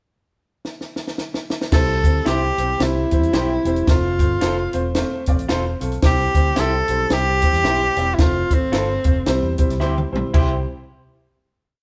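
Uplifting and warm, this short, complete piece is uptempo 1960s-style soul in C major at 111 BPM, with a swung eighth-note feel. A compact cocktail drum kit opens at 0.6 seconds with a fill through the pickup bar, then drives a dry, punchy soul beat with a high-tuned snare on all four beats and dark cymbals, sitting up front. At 1.7 seconds the breathy tenor saxophone takes the lead with a jazz-style, motif-based melody of call phrases, full of vibrato and subtone. Beneath it a muted fingered electric bass plays a round, syncopated line with slides and chromatic approach notes, while a woody, slightly detuned upright piano keeps an eighth-note chord rhythm. From 2.3 seconds a slightly broken-up, lo-fi electric guitar through a small old amp adds short picked chops on the backbeat. The band plays live in a stone room with moderate reverb, moving between C and F before a last drum fill leads into the final chord.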